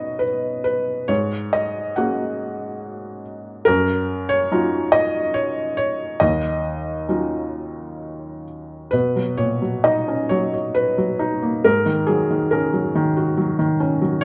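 Classical lyrical solo piano in a melancholic, dark mood, moving with rubato in 3/4 at around 64-72 BPM, this brief excerpt features a felt-muted upright piano that sounds mellow and intimate with audible action noise and short sustain, captured up front by close, detailed microphones in a moderate recital hall reverb as rich ninth and suspended chords drift from Badd9 through Ebm9 to a new phrase opening on Bmaj9 at 8.9 seconds.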